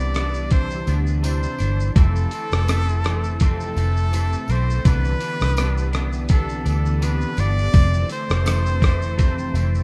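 A clear, close-miked trumpet with vibrato sings a pop-style solo melody over twangy, picked clean electric guitar with a warbly chorus, mellow sawtooth string-machine violas drifting through phaser in the background, and a dark, round, foam-muted electric bass up front, all moving between Cmaj9 and Fmaj7 in C major. From 0.1 seconds a gritty, compressed sampler-style drum kit with a thumpy kick, hi-hat, rim click and shaker joins, alongside a jingly tambourine set back in the mix. This nostalgic, sunny bedroom-pop cut sits at 83 BPM with a light 16th-note swing and the rough, cassette-tinged feel of a home demo.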